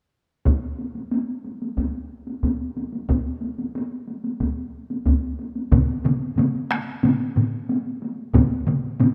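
A straight 4/4 pulse at 91 BPM drives this powerful Japanese traditional taiko drum ensemble, cut from a longer piece. Two taiko ensembles open at 0.5 seconds: one, struck with hard sticks, sounds up front yet distant in a large room, while the other, played with heavy sticks, sits in the background of a small room. At 5.7 seconds two more small-room taiko ensembles join up front, one with hard sticks and one with heavy sticks, and a moderate, lush hall reverb surrounds the rough home-demo mix.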